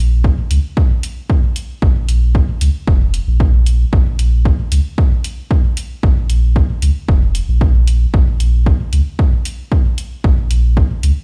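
A straight 4/4 pulse drives this nocturnal, cavernous dub techno fragment, where a punchy, tape-warm analog kick sits up front beside a deep, clean, dark sine sub bass that pumps with sidechain compression, while a faint, layered, overdriven electronic hi-hat, re-recorded in a small room, sits quietly above, and the whole mix is heard through a big sound system in a bare stone room.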